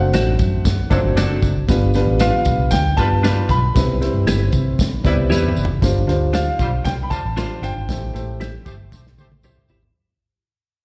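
Uptempo 1960s-style soul at 116 BPM in a straight 4/4, this joyful, uplifting excerpt sounds like a live gig heard through the venue's PA in a reverberant hall, tuned a touch sharp to A4 = 443 Hz. A brilliant grand piano carries the high melody over a woody, vintage upright piano accompaniment, both bathed in plate reverb and slapback echo. A dark, round, foam-muted electric bass sits punchy and up front, while a small-room soul drum kit with a tight kick and rolled-off top drives the groove alongside a jingly, band-limited tambourine. A clean, compressed hollow-body guitar adds phaser-tinged stabs, and a tight horn section with light vibrato joins at 0.9 seconds with a jazz-style second line. The harmony moves from D7/F# through G7 and Cmaj7 to G7sus4 and Am7, and a drum fill at 5.3 seconds leads into the second section, which begins fading out at 5.8 seconds.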